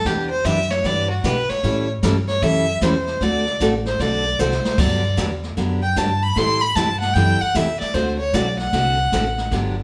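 A rich, focused fiddle sits up front with light vibrato, carrying a bowed solo through this cheerful, down-home western swing excerpt at a brisk 152 BPM with a swung feel. Beneath it, a woody, thumpy pizzicato upright bass on gut strings and a bright, full-bodied picked dreadnought guitar move through a jazzy progression from Em7 to A7, D7 and Gmaj7. A distant, roomy brush kit with dark cymbals and a boomy kick adds a short fill at 4.4 seconds, and the band plays live together in a large studio with moderate reverb.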